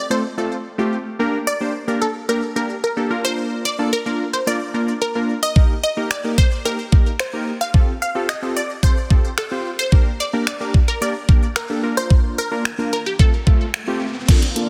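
Dance-pop with a carefree, summery mood, cut from a longer piece, where a bright, punchy unison pluck carries the melody over round, detuned analog keys with sidechain pumping, a knocking, overdriven pop drum kit with a deep snare arrives up front at 5.6 seconds, a riser builds in the background from 12.9 seconds, and a fill at 14.3 seconds brings brief glimpses of a lush supersaw pad and a dark, clean electric guitar in a dense, heavily limited mix.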